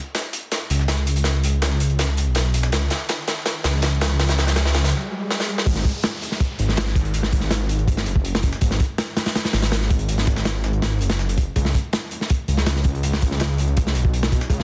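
Drum and bass with a jungle edge at 163 BPM, this frenetic, raw excerpt opens with a crunchy, saturated breakbeat kit up front, its high-passed kick, snare and hats filling through a build-up alongside a very quiet, tape-warm soul sampler kit, while a thick, menacing detuned saw bass enters at 0.7 seconds, a background electronic riser and swell arrive at 3.1 seconds, and after a brief stop the drop lands at 5.7 seconds, all in a small room ambience with vinyl crackle and a dense, heavily limited master.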